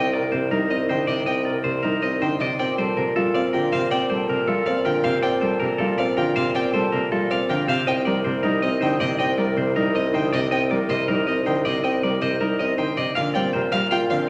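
A clean, twangy electric guitar sits up front with a bright, picked melody in this hypnotic minimalist pattern piece, heard in a fragment cut from a longer work. It moves at 318 BPM in eighths through an asymmetric 7/8 in Bb major. A deep-bassed concert grand piano and a smooth, bowed violin each play arpeggios, while a solo bassoon with a soft attack holds the bass, and an expressive cello with vibrato and portamento joins at 0.3 seconds. The harmony circles between Cm7 and Bb chords, all set in a wet recital hall.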